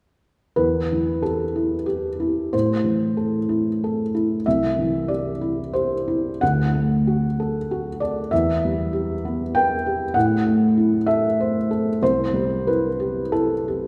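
Neoclassical minimalist piano in a reflective, wistful mood: a solo felt-muted upright, soft and intimate with thick felt and audible action noise, sits up front in 3/4 with a rubato feel, moving through Em, Am, C and D from 0.6 to 13.9 seconds inside the wet reverb of a recital hall, cut from a longer piece.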